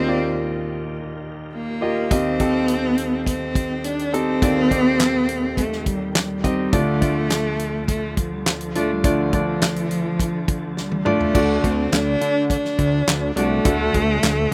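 Over a straight 4/4 pulse, this hopeful piano-driven pop piece sets a rich, bowed solo cello melody with vibrato against a clear concert grand with slapback echo and a smooth tonewheel organ with fast rotary speaker in the background, before a punchy, natural country drum kit enters at 2.1 seconds and, after a drum fill, a fat, detuned sawtooth analog bass arrives at 11.3 seconds as the organ drops out, with the mix heard dry and outdoors with little reverb.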